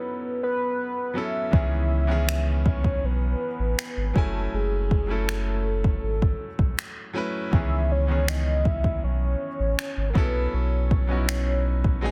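A velvety synth lead carries a sensual, longing melody through chorus, tremolo and tape echo over clear concert grand piano in this 80 BPM contemporary R&B excerpt in C# minor, joined at 1.5 seconds by a round, deep sub bass and an electronic drum kit of finger snaps and soft kick, moving through C#m7, F#m9 and B9sus4 in a dry, dense, heavily limited modern mix.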